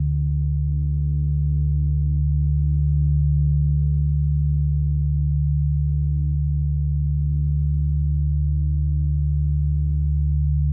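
A deep, rumbling drone carries this ambient fragment on its own from 0.0 to 10.7 seconds, sitting up front between D2 and D3 with a dark, nasal, ring-modulated edge to its detuned tones. It fades in slowly, sustains, and lets its long release bleed into its own built-in reverb, while the surrounding room stays dry. The mood is cavernous and unsettling, a short stretch cut from a longer piece.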